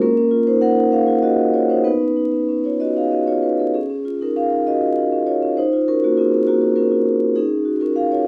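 A close, detailed recording catches every ringing overtone of the vibraphone, set in a moderate stone-room reverb with a faint vinyl crackle beneath it. This short excerpt of a contemporary classical piece for solo vibraphone sits around 98 BPM in 3/4, though the beats are uneven and the phrasing moves freely in rubato. The vibraphone, struck with soft mallets and played with its motor off, is up front and mellow, with a metallic glow that spans from Bb3 to Gb5. Its harmony moves from Bbm through Cbadd9 and Db to Ebm9 at 5.6 seconds, settling on Ebm11 at 7.4 seconds, near the close. The mood is playful and warm, an intimate moment lifted from a longer work.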